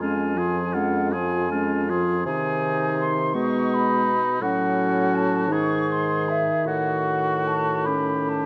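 Moving in a slow 6/8 at 54 BPM with an uneven, rubato pulse, this solemn, elegiac 8.5-second passage from a slow romantic wind-quintet movement is tuned to A4 = 444 Hz. A hollow, pure-toned silver flute with crisp attack and vibrato carries the melody over an oboe second line, while a mellow, punchy, vintage-tinged French horn and a distant, roomy clarinet fill in the accompaniment, and an up-front, soft-attacked bassoon anchors the bass. Close, detailed microphones and light reverb keep each voice distinct as the harmony moves through shifting chords before arriving at A7.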